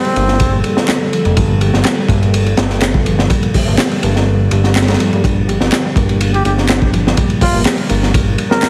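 A funky, energetic breakbeat excerpt rides on a crunchy, up-front drum kit with dark cymbals and a high-tuned snare, joined by overdriven electronic handclaps, a fat, tube-saturated analog bass, a reedy, worn electric piano riff with fast tremolo and delay, a warbling, nostalgic pad pumping under sidechain, a very quiet swell at 4.5 seconds, and a veiled, breathy bucket-muted trumpet with AM radio colour that returns at 6.3 seconds, all pressed into a heavily compressed radio sound with faint mains hum.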